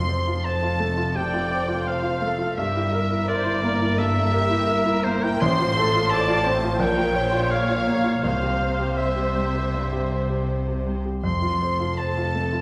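A clear concert grand piano, up front with a deep bass, carries the melody from the opening alongside a very quiet violin section, while a bright oboe with light vibrato sings a second line above, doubled by another violin section. This is a passionate, lush romantic movement for piano and orchestra in F major, moving with rubato at around 77-88 BPM in 4/4. Bowed double basses and a rich, smooth cello section in the background anchor the bass, and a viola section with expressive portamento fills in the accompaniment from 1.2 to 10.9 seconds. Very quiet, close and dry timpani touch the opening moment, then return from 8.2 seconds as the harmony moves through B-flat minor to C and resolves home to F at 11.2 seconds. The ensemble sits in a resonant recital hall, and the passage is cut from a longer piece.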